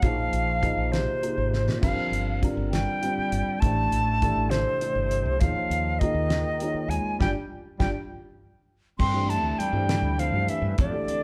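Rolling in 6/8 with a straight feel, this intense, funky slice of electric jazz fusion rides on a damped 70s drum kit, dry and up front, with a fat snare and tight kick, plus crash and hi-hat, and a drum fill at 1.5 seconds. Beneath it a fretless electric bass sounds dark and round, while a baby grand piano adds mellow, boxy accompaniment over chords moving from Bb9sus4 through Gm7, Am7 and Eb9sus4. A silver concert flute carries the melody, airy with vibrato and a soft attack, and a bass clarinet plays a breathy, distant second line in a jazz style. The band hits an accent together from 7.2 to 9.0 seconds on a G5 chord, then at 9.0 seconds a clean, twangy electric guitar enters with very quiet, bright, picked stabs over G9sus4. The group sounds as though it is playing live in one large studio room, where moderate reverb gives the ensemble depth until the cut ends.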